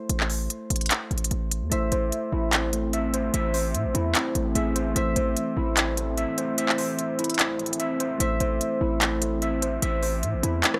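Dry and gritty, this short hardware-recorded cut from a longer hip hop and trap piece sits in a half-time groove with a hard-hitting, eerie mood. Soft, round electric-piano-like synth keys open the track in the background, mellow and gently chorused behind a low-pass filter, while a punchy, heavy 808-style bass and a crisp, up-front electronic trap kit of handclaps, hi-hats and rim clicks arrive almost at once. At 1.7 seconds an overdriven tine electric piano joins with barky arpeggios played through a combo amp, coloured by analog chorus, tape echo and a low-pass filter. A deep, moody ambient pad rises in the background at 3.3 seconds, holding dark sustained chords thickened by detuned unison, a sub octave, wave-folding and ring modulation, with chorus and its own reverb. The kick drops out at 6.6 seconds before returning, and the whole passage rests on a single A minor chord.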